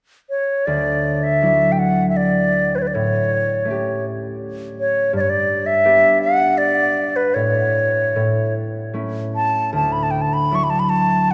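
Celtic folk in the manner of a slow air, this tender, pastoral fragment moves in a loose, rubato three-four. A wooden flute carries the melody from 0.3 seconds, its airy, woody voice held in a straight tone with clean, tongued notes, placed up front in the mix. At 0.7 seconds a concert harp joins beneath it, fingerpicked and mellow, its ringing low and middle strings giving the flute a soft bed. The harmony drifts through Dadd9, A7 and G, pauses briefly on a chordless moment, then settles through A back to Dadd9. Both instruments sit in a cathedral-like space whose reverb lingers for several seconds, wrapping the phrases in a long, glowing tail until the passage breaks off at 11.3 seconds.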